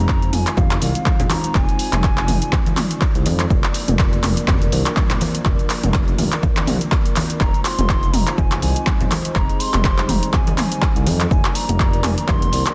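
A dense, heavily limited modern master with light reverb frames this warm, spiritual afro house excerpt at 123 BPM in 4/4, with a 56% swing on the sixteenths and a modal F dorian color. A punchy, overdriven electronic kick sits loudest, joined by a layered deep house kit of handclaps, hi-hat, shaker and toms that stands up front with its own grit, while low-tuned, ringing congas struck with hard hands sit close yet in the background from 0.6 seconds. Beneath them a smooth, nasal synth bass built from detuned sawtooth, square and triangle waves holds sustained notes with vibrato and sidechain pumping. A dark, moody analog pad with a sub octave, slow attack and long release breathes through chorus and the same pumping, sustaining chords that move between Fm7 and Bb/F. Over the top, an airy bamboo bansuri plays tongued phrases with vibrato and dub echo, sounding first at the opening, falling away at 3.0 seconds and returning at 7.4 seconds until the cut at 12.7 seconds.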